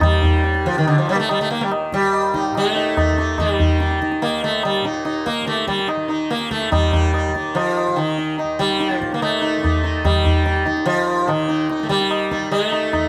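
This is a Hindustani classical recording in raga yaman on Eb, a devotional and meditative passage cut from a longer piece, moving at 144 BPM in a straight 4/4. The plectrum-plucked sitar carries the melody up front, its round, buzzing tone ringing with the shimmer of its sympathetic strings. Behind it, a softly plucked tanpura sustains a bright drone that sits low in the mix. The high-tuned tabla sounds close and dry, with a ringing tone. The three players perform together in one room with a moderate studio reverb, and the opening phrase material returns at 6.7 seconds as the same section repeats through to 13.1 seconds.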